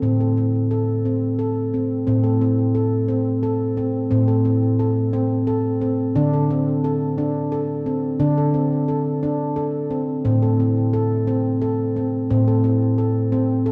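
A ringing stainless-steel handpan, close-miked and bright with a trail of delay, carries this gentle, hypnotic world meditation, with its sharp finger strokes sitting up front from the low register to the upper. The steady 6/8 pulse drifts from A minor to D5 at 6.2 seconds and back to A minor at 10.3 seconds. A lush concert-hall reverb and a dark production wrap this short excerpt.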